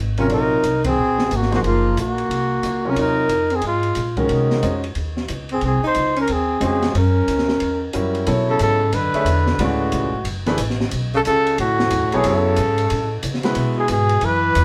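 Modal jazz with a cool, intense swing feel, heard in a short cut from a longer performance by a band playing live in one room. Woody pizzicato upright bass on gut strings opens at 0.0 s, and the full group joins almost at once, landing a band accent at 0.8 s. A breathy, mellow trumpet sits up front with the melody, its vibrato and scooped notes rounded by a smooth top. Beneath it, a close-miked tenor saxophone adds a soft-attack second line with its own vibrato and scoops, while a clear, intimate grand piano comps with audible action noise. The acoustic drum kit feels small-room and dark, with a boomy kick, a high-tuned snare and dark cymbals, and the harmony shifts to a new section at 8.3 s under moderate studio reverb.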